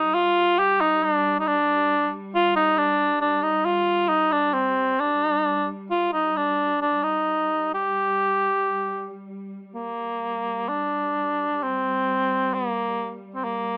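A rough, home-demo sound with a narrow AM-radio tone and light reverb frames this mournful Caucasian folk lament in G minor, cut from a longer piece and moving freely in rubato around 59-70 BPM. Up front, a close-miked solo cor anglais sings the longing melody in a mellow classical style with light vibrato. Beneath it, a bowed cello section played con sordino holds a dark, veiled drone on G3 with soft attacks, and the music shifts into a new section at 9.7 seconds before the fragment ends at 13.8 seconds.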